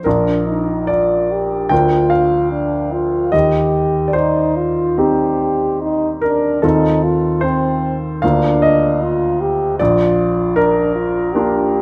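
Uneven, rubato beats hover around 74 BPM in 4/4, giving this melancholic, solemn romantic classical fragment in Bb major a freely breathing pulse as it moves from Bb through Bb/D, Cm/Eb and F7/Eb back home to Bb. A warm French horn sings the solo melody between C4 and G4 with light vibrato, sounding distant and roomy, while an intimate, up-front baby grand piano accompanies from Bb1 to G5 with a clear, natural tone and audible action noise. Both play from 0.0 to 11.8 seconds, captured by close, detailed microphones within a moderate recital hall reverb.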